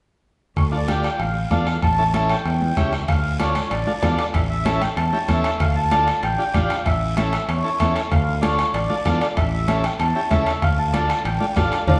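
A growly, up-front fretless electric bass drives this passionate, danceable cumbia excerpt at 191 BPM in D harmonic minor, beneath a reedy, dark accordion melody and a buzzy combo organ with light vibrato, while a soft-beater bombo, damped high-tuned congas and a raspy guiro keep the groove, very quiet ringing timbales join at 3.1 seconds, and the band plays live in one room with a wet large-studio reverb over the Dm and A harmony.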